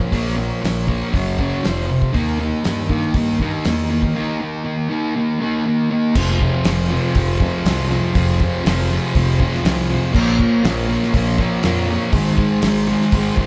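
A band playing live in one room fills a large studio with moderate reverb, giving this gritty, swaggering garage rock clip a raw, roomy sound. At 120 BPM in a straight 4/4 and centred on F minor, a thick, dark fuzz guitar, double-tracked and up front, drives a distorted picked riff through the whole 13.5 seconds. Under it a fingered electric bass adds growly overdriven fuzz, while a cloth-damped, thuddy drum kit keeps time with a fat snare, a tight kick, dark cymbals and a rolled-off top. A vintage combo organ sits low in the mix, holding mellow, clean sustained chords with a light vibrato. The opening passage moves through Bbm, Gb5, F5 and Eb, and at 6.2 seconds the music shifts to a new section built on Fm, Bbm and Ab before the cut.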